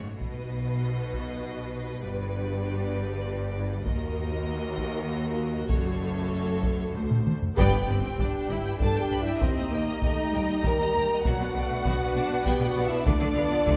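An epic orchestral film score in 3/4, majestic and adventurous, where close taiko drums struck with heavy sticks sound beneath rich, lush violins carrying the melody over a second violin line, dark woody violas, focused cellos and clear double basses in the background, with mellow, distant French horns sustaining chords, and at 7.6 s a drum fill gives way to a band accent, a barely audible timpani, a very quiet huge bright impact and a close string section in the background, all in a wet hall reverb.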